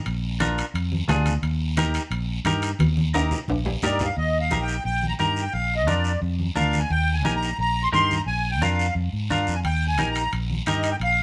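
A reedy, sweet accordion with a light tremolo tuning carries the melody in this sunny, joyful cumbia, entering up front at 3.8 seconds with a boxy small-room sound. Beneath it, a dark, round fingered electric bass sits forward in the mix. A bright, twangy clean electric guitar, picked and compressed, adds up-front accompaniment in its middle register. The percussion bed pairs thick-skinned, low-tuned congas set back in the background with a raspy guiro. Ringing metal-shell timbales stop at 4.1 seconds, near the end of a drum fill, and come back at 9.6 seconds. Light reverb surrounds this short cut from a longer piece, which moves among Bb7, Eb and Bb chords.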